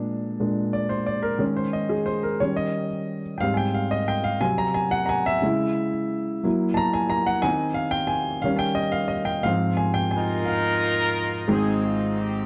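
Gospel in 6/8 at 60 BPM in Ab major, jubilant yet reverent, this excerpt opens with grand piano alone, intimate and up front with audible action noise, moving through rich changes from Bb7 to an Abmaj7 resolution at 11.5 seconds. At 10.2 seconds a horn section takes the melody with light vibrato and tape echo, sounding roomy and distant. A dark production and echo chamber reverb wrap the whole in a mellow glow.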